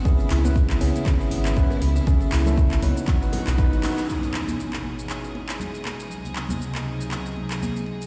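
A rich, earthy chamber string section opens this hypnotic afro house excerpt in C# minor at 119 BPM, holding bowed chords with light vibrato, while a buzzing, woody kalimba plays airy arpeggios in the background through a dub echo. Almost at once a barky tine electric piano adds bright, clean stabs through a combo amp. A round, dark analog bass and an overdriven, deep electronic kick sit up front, joined by a deep house kit of handclaps, shaker and metallic hi-hats, high-tuned congas struck with hard hands, and very quiet, distant bongos, all riding a light 16th-note swing. The harmony moves from C#m7 through F#m7/C# to B, and a band accent lands at 3.8 seconds. At 4.1 seconds an electronic impact marks the second section, where the kalimba, electric piano, bass, kick and bongos have dropped away, leaving the strings, drum kit and congas over C#m7 and G#7/C#. The strings, kalimba, electric piano and bass all breathe with sidechain pumping, and the mix sounds as if played on a big sound system in a bare room with a large studio reverb.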